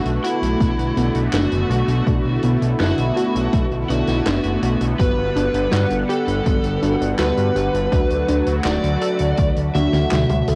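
A dusty, cassette-worn home recording with moderate booth ambience carries this nostalgic, moody synthwave excerpt in B minor at 82 BPM, where a dark, overdriven lead guitar with 12-bit grit, tape echo and shimmer reverb sings over a smooth, detuned analog pad with chorus and sidechain pumping, a fat sawtooth bass up front, a very quiet warbling lo-fi pluck arpeggio, faint dreamy FM electric piano stabs, an acoustic big-band kit of handclaps, hi-hat, snare and toms, and a punchy overdriven electronic kick entering at 0.6 s, moving through Bm7, Gmaj7 and D before a drum fill at 9.8 s.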